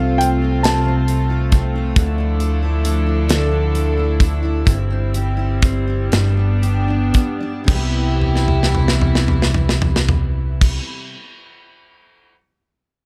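Up front in this heartfelt, swaying six-eight pop ballad excerpt in C major, at 37-46 BPM in dotted quarters, a polished, airy studio drum kit with a punchy kick and medium-tuned snare carries the slowing pulse into a drum fill from 8.2 to 10.6 seconds, beside a round, amped electric bass, a full-bodied, double-tracked steel-string acoustic guitar with audible finger squeak, a floating, sul tasto chamber string section holding soft-attack chords, and a dark, mellow grand piano whose delayed melody is heard only until 1.6 seconds, all set in a dark, warm small-room ambience.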